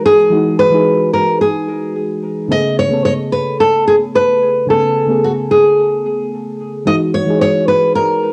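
A fingerpicked nylon-string guitar melody and a soft, round FM electric piano with chorus and tape echo open this blissful, sunny chillout excerpt together, the guitar's classical tone roughened by 12-bit sampler grit and analog delay, both up front in a wet studio reverb with cassette tape colour as the harmony moves from Emaj9 to Amaj9 at 2.5 seconds and back to Emaj9 at 6.9 seconds.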